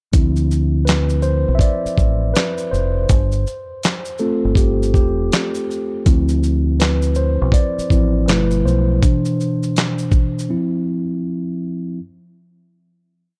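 A dry, gritty hardware recording with a cassette-tape haze gives this short, complete lo-fi hip hop piece in D dorian a melancholic, nostalgic air at 81 BPM with a swung sixteenth feel. A mellow, clean tine electric piano, itself tape-coloured, carries the solo with rhythmic drop-2 chords and grace notes repeated like a sampled loop, moving from Dm7 through G7sus4, G13 and Cmaj7. Beneath it a round, dark dub bass plays a sparse line with muted ghost notes and slides until 9.0 seconds, and a compressed, thumpy sampler-style kit with a clap-layered snare and shaker sixteenths drops out at 10.5 seconds, leaving the piano alone to settle on Cadd11/F.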